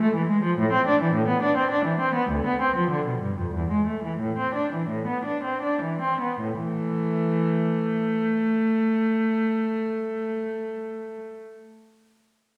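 Bathed in a wet scoring-stage reverb and heard from further back in the room, this grave, solemn fragment of a baroque-style suite movement for unaccompanied cello in A minor and 3/4 gives a single bowed period-style cello a nasal, reedy gut-string tone as it moves with rubato between 75 and 107 BPM, slowing down from 1.4 to 6.4 seconds before settling onto a bare A5 chord in a second passage that runs to 11.0 seconds.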